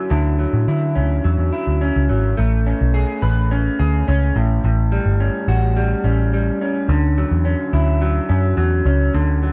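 The sound is dry and close, with little reverb, like a 1970s-style studio recording, and this short cut is taken from a longer piece of indie bedroom pop in straight 4/4. The mood is sunny and hazy. An electric guitar through a small old amp carries the accompaniment from the very start, its tone slightly broken-up, lo-fi and compressed, soaked in lush chorus and a warbly pitch drift. A vintage muted picked electric bass joins at 0.1 seconds, dark, round and punchy, sitting up front and a little louder than the guitar. The harmony moves from Dmaj9 into Amaj9 at 2.4 seconds, where a new section begins, then passes through A6 before settling back on Dmaj9 at 6.9 seconds.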